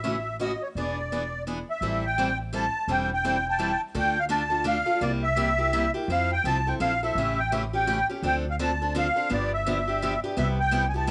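A reedy, shimmering musette accordion carries the melody up front from the opening moment, over a bright, boxy picked parlour steel-string guitar with audible finger squeak and a woody, thumpy pizzicato upright bass on gut strings, in a virtuosic yet bittersweet gypsy-jazz waltz at 168 BPM in 3/4 with a light swing, moving from A minor into D minor at 4.0 seconds, set in a small room with light reverb and cut from a longer piece.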